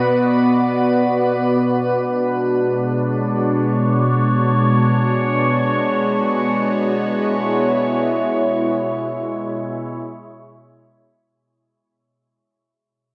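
Drenched in a vast, echoing cathedral reverb, this spacious, melancholic ambient fragment sets a dark, morphing, detuned wavetable pad with phaser up front over a tense, string-like bowed drone with vibrato in the background, while a glassy, chorused texture of drifting overtones floats only through the first 1.6 seconds before the harmony moves from Bm to Bm69 and the sound fades out from 8.0 seconds.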